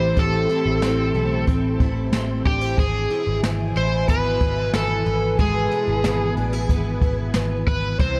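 Ethereal and haunting, this brief dream pop fragment moves at 92 BPM in a straight 4/4, cut from a longer piece and drifting from Am7 to E/G# at 2.8 seconds. Up front, an overdriven slide guitar carries the melody with a bright, gritty edge, its notes trailed by digital delay. Beneath it, a picked twelve-string acoustic guitar plays shimmering, octave-doubled arpeggios coloured by ensemble chorus and delay, while a warbling, nostalgic pad with a lo-fi character holds sustained chords in the background, its slow attack and long release softened further by chorus and reverb. A vintage foam-muted electric bass gives a round, dark low end, and a jazz brush kit with a boomy kick, medium-tuned snare and hi-hat enters at 0.2 seconds. The production is dark and warm overall, set in a small room with light reverb.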